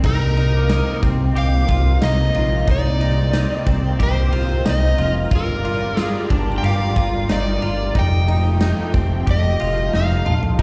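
A straight 4/4 pulse at 91 BPM from a huge arena drum kit with a punchy kick and bright cymbals drives this haunting, melancholic dream pop excerpt in C minor, where a fat, saturated analog bass sits up front beneath a lush, warbling unison pad, twangy clean electric guitar arpeggios with chorus and slapback echo, an overdriven slide guitar melody entering at 0.1 seconds, and a metallic, ringing vibraphone with hard mallets in the background from 0.5 seconds, all moving through Cm9, Gm7 and F9 in a large studio reverb with vinyl crackle before a drum fill at 9.9 seconds.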